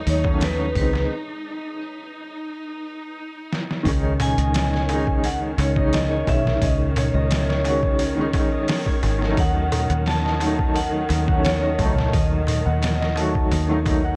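A straight trip hop beat from a gritty, overdriven sampler-style kit with a thumpy kick, backed by a crisp metal-shell darbuka and a round, punchy dub bass, drives this brooding, cinematic excerpt, where a soft felt-muted upright piano with tremolo accompanies, a lush bowed string section holds sustained chords, a bright vibraphone struck with hard mallets carries the melody through tape echo, a breathy wind-like noise layer lingers only at the opening, a break runs from 1.1 to 3.9 seconds, and a fingerpicked Celtic harp with 12-bit sampler grit joins in the background at 3.8 seconds, the whole mix wrapped in warbling old cassette tape.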